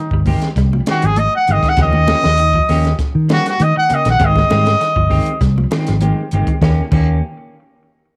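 Afrobeat with a funky, hypnotic mood, this short slice of a longer piece opens with a clear, roomy trumpet carrying the solo melody up front, its tone given a cassette tape colouring. Beneath it a fingered electric bass sits punchy and amped, equally prominent, while a compact cocktail drum kit with dark cymbals, a high-tuned snare and a punchy kick plays in a small room, its top end rolled off and also touched by cassette tape. Two clean electric guitars fill the middle: one picks very quiet arpeggios, the other adds twangy fingered stabs with a cassette tape tint. Bright, high-tuned congas with hard hands and damped, thin skins sit very quietly in the background. The harmony moves between Abmaj7 and Eb9, the trumpet falls silent around 5.4 seconds, and the band closes on Eb7 in a homely, lo-fi cassette sound.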